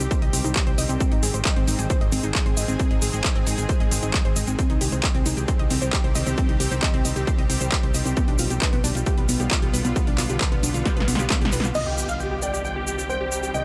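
An overdriven, heavy electronic kick sits up front in this euphoric, driving uplifting trance excerpt, backed by a techno drum kit with a punchy snare, handclaps, hi-hat and crash cymbal, with overdrive, small room ambience and sidechain pumping on the hats and cymbals. Beneath it, a round, dark FM bass and a shimmering, ethereal pad with chorus, octave-up shimmer and built-in reverb carry a minor progression that moves from Cm through Ab and G7/B, both pumping against the kick. A lush, detuned sawtooth pluck spins arpeggios through dub echo, while a grainy egg shaker adds close, dry texture. After a drum fill at 10.9 s, a soft, boxy felt-muted upright piano with audible action noise enters at 11.7 s, adding a second line with dub echo. At 11.8 s a huge, bright supersaw lead takes the melody through a phaser and a filter sweep, joined by a very quiet pluck playing a second line and a faint electronic impact.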